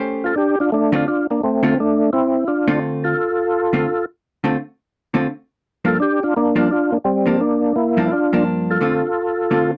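Soulful and bluesy, this short excerpt from a longer jazz piece swings at 170 BPM in D minor, moving from Dm7 to Gm7 at 6.0 seconds and back to Dm7 at 8.8 seconds. A percussive tonewheel organ carries the melody up front, lightly overdriven with chorus vibrato and a slow rotary speaker giving its full tone a gentle churn. A dark, clean, compressed hollow-body electric guitar supplies picked accompaniment from the start, all captured in a dry, close 1970s-style studio with a modest booth ambience.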